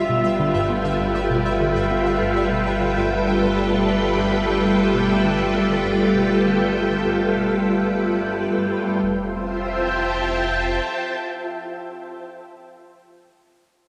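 A lush, vintage string machine holds sustained G7 chords up front, joined by a deep, round analog bass and a bright, pulsing gated texture shimmering in the background of this luminous, expansive piece of ambient space music at 99 BPM. A squelchy, resonant blip pluck enters at 0.1 seconds with a filter sweep, ring modulation, phaser, lush chorus and delay, while the bass and the synth arpeggio sound both fade out up to 9.0 seconds. At 9.0 seconds the harmony moves to Fmaj7 as the strings carry on to 12.2 seconds, all within an echo-heavy mix and a wet echo-chamber reverb with the hazy colour of cassette tape.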